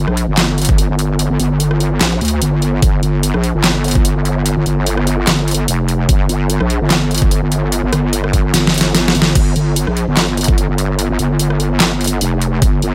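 Heavy and aggressive, this half-time wobble dubstep passage, cut from a longer piece, is driven by a saturated, detuned square-and-sine wobble bass with chorus and overdrive, set up front beside an overdriven electronic kit of deep snare, bright hi-hats, crash, handclaps and rim clicks, while a knocking, layered electronic kick drops out between 8.5 and 9.4 seconds as a drum fill takes over, all inside a digital ambience.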